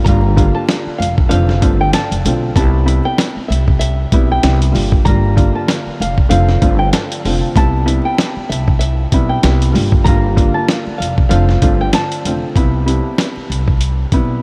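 A fingerpicked flamenco guitar melody opens this confident boom-bap hip-hop excerpt over a dark, mellow upright piano with audible action noise and cassette-tape colour, and a woody pizzicato upright bass sitting up front. A gritty, compressed sampler-style drum kit with a thumpy kick and medium-tuned snare joins at 0.1 seconds, swinging through a Gm7, F6, Cmaj7 cycle as the guitar's analog delay trails behind it. The guitar drops out at 12.2 seconds, leaving piano, bass and drums inside a small room with light reverb and vinyl crackle.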